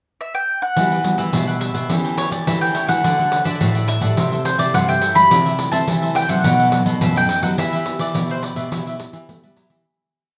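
A woody, double-strung mandolin sits up front from a pickup at 0.2 seconds, spinning a bittersweet, nostalgic melody of short song-like motifs in E minor at 106 BPM. This short samba and choro piece brings in a crisp cavaquinho strumming in sixteenths, a jingly pandeiro placed close, a bright fingerpicked nylon-string guitar with a samba bass figure and a full-bodied, deep classical nylon-string guitar in the background with thumb bass and syncopated plucked chords, all entering at 0.8 seconds. They move through Emadd9, A7/E, D, C6, Am/C and B7 back to Em inside a large, reverberant studio space before a fade-out from 7.6 seconds.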